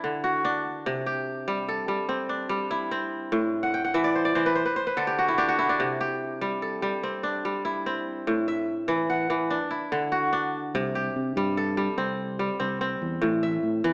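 West African traditional string music in a straight 12/8 at 97 BPM, joyful and warm in C lydian, is carried by a bright, ringing kora playing crisp fingerpicked arpeggios up front, with a fill from 3.6 to 5.8 seconds. A round, punchy fingered electric bass joins at 10.7 seconds underneath. The sound sits in a wet recital hall reverb with a small speaker character, cut from a longer piece.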